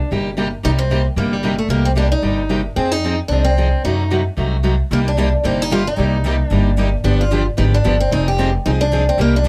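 Acoustic string swing in the jazz manouche style, this bittersweet, virtuosic C minor passage from a longer piece moves at a brisk 224 BPM in a swung 4/4 over chords from Cm7 through F#dim7 to G7b9. A boxy parlour guitar carries the melody up front, with a bright concert guitar picking the accompaniment and a woody, thumpy pizzicato upright bass on gut strings anchoring the low end. At 4.9 s a full-bodied jumbo guitar with fresh strings and audible finger squeak joins the accompaniment in the background, all captured by close, detailed microphones with light reverb.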